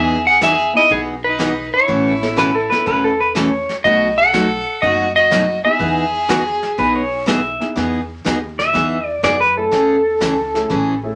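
A clean, up-front lap steel carries the melody from the start of this playful, swinging western swing piece at 122 BPM in E major, joined by a clear, boxy bowed fiddle on a second line, a bright picked dreadnought acoustic guitar, a slightly detuned upright piano with audible action noise, and a woody, growly pizzicato upright bass, while a vintage brush kit enters at 0.4 seconds. At 2.4 seconds a compressed, fingerpicked pedal steel with volume swells adds another voice, then takes a solo from 7.8 seconds after the lap steel and fiddle stop. The whole band sits in a wet studio ambience, and the passage is cut from a longer piece.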